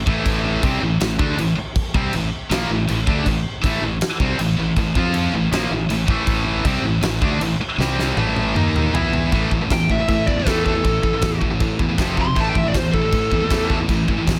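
A big acoustic rock kit sits up front in this heavy, relentless metal passage, its fat snare and punchy kick ringing in a natural, roomy space while china and crash cymbals and toms fill out the sound. Two picked rhythm guitars drive the riff together: one bright and overdriven, the other scooped and high-gain with heavy distortion. Beneath them, a growly fingered electric bass anchors the low end. The opening stretch moves in a half-time feel over A minor with brief turns to F, and a drum fill from 7.8 seconds pushes through a quick run of power chords. Around 9.7 seconds a dark, distorted high-gain lead guitar enters with a solo set in tape echo, riding above the riff in a higher register. The mix is dense and heavily limited in a modern style, and the passage is cut from a longer piece.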